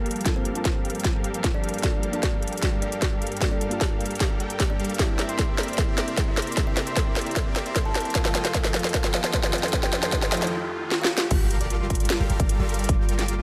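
Opening on a soft round pluck, an ethereal airy pad and huge detuned supersaw chords pumping against the beat over Gm7, this dreamy, emotional half-time future bass excerpt at 152 BPM in G minor brings in a punchy electronic kick, a trap kit with crisp hats and a sharp snare, and a woody, ringing kalimba melody; ringing harp arpeggios join at 5.0 s, and a riser and noise sweep build to an impact and a deep, boomy 808-style bass at the drop at 11.3 s.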